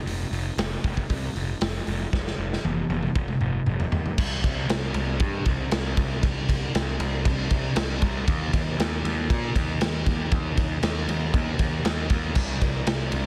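Dry and densely limited, this dark, angsty quiet-loud alternative rock excerpt in C minor runs at 117 BPM in straight 4/4, pairing a raw garage drum kit, with its punchy kick, medium-tuned snare, rolled-off top and stone-room character, which plays a fill from 2.1 to 4.2 seconds into the next section, with an up-front picked electric bass whose fuzz and overdrive give it a bright, direct bite.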